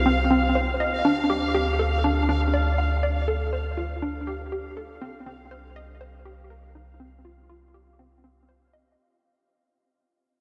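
A hollow, bouncy square-wave pluck sits up front, playing a riff from 0.1 s with a bright, detuned edge, a noise layer and a sub octave beneath its quick filter snap, all dressed in lush chorus and analog delay. This is mysterious, hypnotic, sequencer-driven space music at 121 BPM in a straight 4/4, set in C dorian with tuning at A4 = 438 Hz. A deep, round sine sub bass holds sustained low notes up front. Around them, a bubbling sawtooth texture shifts through random resonant filter steps, its soft-attack, detuned tone carried by chorus and its own reverb. The harmony moves from Cm to Dm at 1.0 s and back to Cm at 5.0 s, while the whole clip fades out over its nine seconds. Taken from a longer piece, the mix is dreamy and soaked in a huge ambient reverb with an 8.3-second tail.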